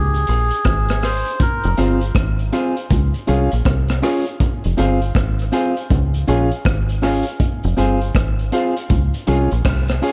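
A reedy, nasal melodica phrase with dub echo opens this deep, hypnotic dub reggae excerpt over a round, foam-muted fingered bass, stopping by 1.8 s while a gritty, saturated breakbeat kit with a punchy kick, a compressed cabasa in the background, a dark hollow-body semi-hollow guitar with harmonic tremolo and echo, and clear, open grand piano stabs carry the swung groove through its slow shifts between Db and Fm.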